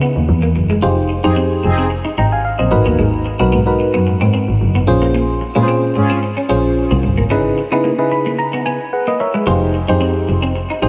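A straight 4/4 funk groove at 111 BPM in F minor sets a slick, danceable mood, as a glassy, bell-like FM electric piano with chorus plays minor-ninth chords up front and adds a fill from 7.9 to 9.5 seconds, a clean semi-hollow electric guitar picks a riff, a smooth bowed double bass holds the low end with vibrato from 0.2 seconds, and a fat, brassy analog synth line with a filter sweep surfaces in two short bursts, all set in a dreamy mix soaked in a huge ambient reverb.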